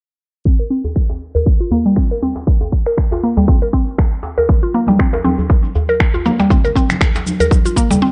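A woody, round, mallet-like FM synth pluck sits up front with chorused arpeggios between G3 and Bb4, sidechain pumping, dub echo and a filter sweep. Alongside it, a punchy, up-front electronic kick, layered electronic shaker and finger snaps, and a tight, cracking djembe under hard hands carry the groove, joined at 4.5 s by bright, distant congas in the background. Together they drive this spiritual, warm afro house excerpt at 119 BPM with a light 16th-note swing, set in light reverb and a low-pass filter.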